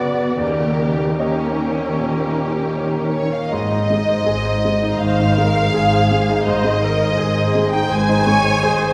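Cinematic and hopeful, this rubato passage in 4/4 at about 75-84 BPM opens on a D#7 chord with a bright, up-front baby grand piano accompanying lush symphonic violins on a second line, a distant viola section and soft-attack cellos on the bass. An intimate chamber violin section enters at 3.1 s with light vibrato and a sul tasto tone to carry the melody, and the music settles into Ab major at 3.5 s as a woody double bass section joins in the background, the whole ensemble heard in the wet reverb of a church.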